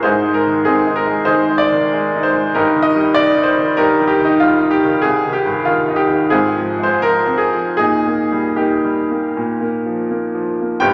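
Played with a free, rubato feel in 4/4, the tempo drifts between 74 and 100 BPM in this brief excerpt from a romantic classical character piece for solo piano in Eb major. A bright upright piano carries everything alone from 0.0 to 10.9 seconds, its tone woody, brilliant and polished, sitting up front and present across a range from G1 to G5. The harmony moves from Ab through Eb/G, Cm and Fm/Ab to Eb/Bb, arriving on a Bb5 chord at 9.4 seconds. A wet scoring-stage reverb with a 1.9-second decay surrounds the instrument with a spacious, lingering halo. The mood is hopeful and warm.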